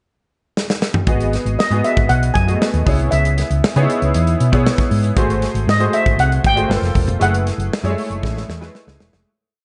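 A crisp sixteenth-note studio groove at 117 BPM in straight 4/4 drives this short, polished piece of 1980s jazz-funk pop, with a drum fill from 0.6 seconds opening the pickup bar before bass and piano arrive at 1.1 seconds for a slick, urban pre-chorus, joined by the steel pan at 1.6 seconds. The acoustic kit sits up front with a punchy kick, a medium-tuned snare, hi-hat and toms, and another fill closes things out from 8.2 seconds. Underneath, a dark, round hollow-body short-scale electric bass plays an agile, syncopated line with muted ghost notes and chromatic approach notes, moving through G#m7, C#m7 and G#7b9 before shifting to Gm11 and F#m11. A clear, intimate grand piano with audible action noise and analog chorus adds syncopated drop-2 chord stabs dressed with grace notes. On top, a shimmering, metallic double-seconds steel pan, played with medium rubber sticks, carries a motif-based melody of song-like phrases in an airy upper register. 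Light small-room reverb frames the dark, warm production, and the whole piece fades out from 7.2 seconds.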